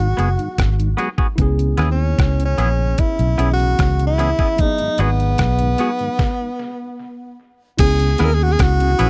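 A clear, close-miked tenor saxophone with vibrato carries a smooth, longing melody with tape echo in this straight 75 BPM lovers rock reggae excerpt in C# minor, over a round, foam-muted fingered bass, a thumpy, detuned 8-bit drum machine with a fat snare and tape echo, bright picked guitar stabs entering at 0.2 seconds, and a worn, lightly overdriven electric piano with chorus and a key-clicking tonewheel organ on slow rotary speaker sitting in the background of a dry, close 1970s-style studio sound, the band stopping from 6.2 to 7.8 seconds.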